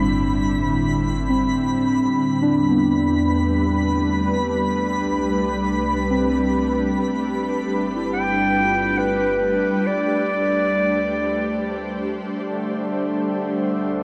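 Reflective and spacious, this ambient fragment in free time drifts through a huge, wet reverb and the worn, warbling pitch drift of old cassette tape. An ethereal, airy pad sits up front with sustained chords from the very start, opening with a filter sweep over its first 2.0 seconds, while a deep, ominous drone rumbles beneath and a twinkling granular texture sparkles high above with an octave-up shimmer. Muted, felt-like synth keys play soft, intimate arpeggios colored by chorus and tape echo, and together with the drone and the granular layer they gradually fade through the long middle stretch. At 8.1 seconds a warm, classical-style clarinet enters as a solo melody, carrying its own tape echo before it ends at 12.0 seconds. In the closing moments from 12.5 seconds a hand-pumped harmonium joins the deep drone with a drone of its own, its reedy, nasal, breathing tone set in a boxy small room, as the harmony settles from Gsus4 through Em and Dm7 onto a bare D5.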